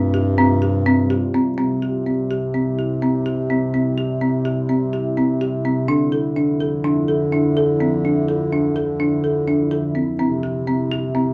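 Set in an uneven 9/8 metre at 251 BPM counted in eighths, with a straight feel, this short cut from a longer contemporary chamber piece in C major moves with a shimmering, playful mood. A folk marimba struck with soft mallets carries arpeggios up front throughout, its hardwood bars sounding woody, round and airy yet dry and rustic. Beneath it, a mellow bass clarinet holds the bass line in a classical style, also placed up front. A deep, moody ambient pad sustains chords underneath, its detuned sawtooth and sine layers with a sub octave, slow attack and long release thickened by chorus and its own reverb. The harmony opens on G7sus4, settles on C at 1.6 seconds, shifts to Dmadd9 at 5.9 seconds and returns to C, all within a dark, warm production touched by light reverb.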